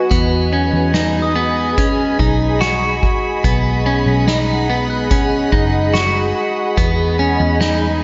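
A straight, unhurried 4/4 pulse from a distant, roomy soft-mallet drum kit with a punchy kick carries this ethereal, floating dream pop fragment, where a clean, compressed electric guitar plays up-front arpeggios through chorus, tape echo and slapback echo, a dark, round, foam-muted bass holds the low end, an airy, full-bodied detuned pad sustains Emaj7 and B6 chords with slow attack and ensemble chorus, and a bell-like glockenspiel rings faintly in the background from 1.2 to 6.0 seconds, all bathed in a lush hall reverb that gives a big arena sound with a mellow, rolled-off top.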